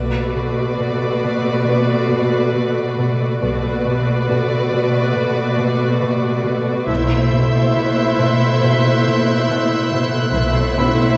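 Heard in a reverberant hall with a softened top end, this brief, mysterious and uneasy cinematic excerpt in B phrygian moves at 69 BPM as a lush string ensemble of vibrato-laden violins, rich viola and cello sections and soft-attack double basses holds a Bm7 chord over a ringing, mellow concert harp riff, a very quiet felt-muted upright piano with audible action noise enters at 1.7 seconds, and a dark, distant high violin line joins at 6.9 seconds as the harmony shifts to Am/B.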